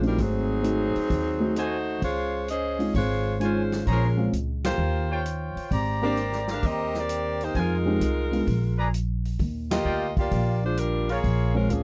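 An intimate baby grand piano with audible action noise, a woody pizzicato upright bass and a swinging big-band drum kit with a punchy kick open this brassy, energetic big band swing excerpt, while a bright saxophone section with vibrato and a smooth top carries the melody up front. A clear, vintage trumpet section joins at 1.6 seconds with stabs over lush extended jazz chords, and the full band hits accents at 4.5 and 9.6 seconds. The sound is dry and close, like a 1970s studio date.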